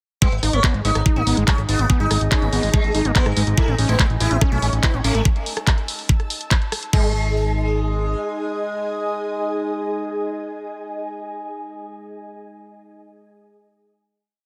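A lightly reverberant digital space carries this short, hypnotic psychedelic trance piece at 143 BPM in G# phrygian, where an overdriven knocking kick drives four-on-the-floor under programmed hats, claps, rim clicks and a crash, a fat rolling analog bass rumbles beneath while a squelchy acid line with tape echo and 12-bit grit pumps through the drop, a bright buzzing sitar riff with phaser shimmers above, a faint metallic wobble bass adds short answering phrases, and an overtone-sweeping drone and ethereal airy pad sustain through the final chord from 6.9 seconds until the sitar ends at 11.6 seconds.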